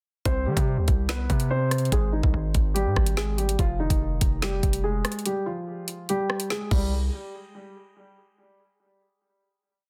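Dark, menacing half-time drill hip hop, in which a mellow, low-passed grand piano loops an octave-doubled melody through tape echo over punchy, heavy 808 sub-bass notes that follow the kick with pitch slides and an electronic kit of knocking kick, woody snare and metallic skipping hats with fast rolls, the kick dropping out from 5.3 to 6.9 seconds before a final hit in a dense, heavily limited mix.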